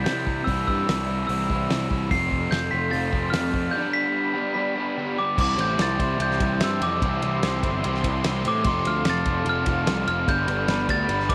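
This is a wistful yet upbeat indie rock excerpt in C major at 147 BPM in a straight 4/4. A bell-like glockenspiel struck with rubber mallets carries the melody from the start, ringing and soft, while a double-tracked, crunchy overdriven guitar riff sits up front beside it. Underneath, a punchy fuzz bass, heard both direct and amped, plays from the start, and the loose drum kit enters at 0.1 seconds with a fat snare, tight kick and dark cymbals in a small room. At 2.1 seconds a detuned sawtooth pad with a slow attack and chorus settles into the background with sustained chords. The harmony cycles through C, F and G across two sections, the second starting at 5.4 seconds, all under light reverb and studio ambience.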